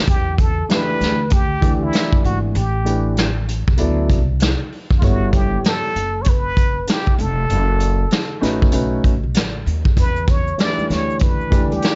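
A breathy, whispered trumpet with plunger mute carries the melody through plate reverb over a brushed vintage drum kit, thumpy pizzicato upright bass and a woody upright piano with audible action noise in this nocturnal, smoky jazz-hop excerpt, with soft-handed maracas and congas slipping in at 10.0 seconds.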